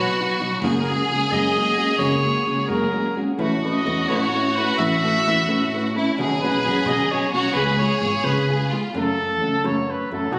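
Captured on a phone in a concert hall with a lingering reverb, this short cut from a longer mariachi piece in B major moves at 87 BPM in a loose, rubato 6/8, proud and festive in mood. A punchy, classical-style trumpet carries the melody up front with vibrato, while a rich, smooth chamber violin section bows a second line until 8.9 s, when the harmony shifts from C#7 to F#m. Underneath, a small, thumb-plucked nylon-string guitar with audible finger squeak supplies the accompaniment and a woody pizzicato upright bass anchors the low end.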